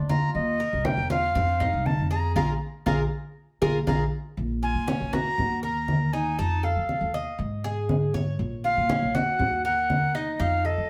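Heard from further back in a reverberant studio, this sultry Cuban son and guajira excerpt in Bb minor moves at 119 BPM in a straight 4/4: a picked, metallic Cuban tres with double strings plays arpeggios over a woody, thumpy pizzicato upright bass and bright, low-tuned congas played with soft hands, while an airy, reedy silver concert flute carries the melody up front with a tongued straight tone and plate reverb, the band hitting an accent from 2.4 to 4.4 seconds before settling into a Bbm7, Ebm and F7 progression.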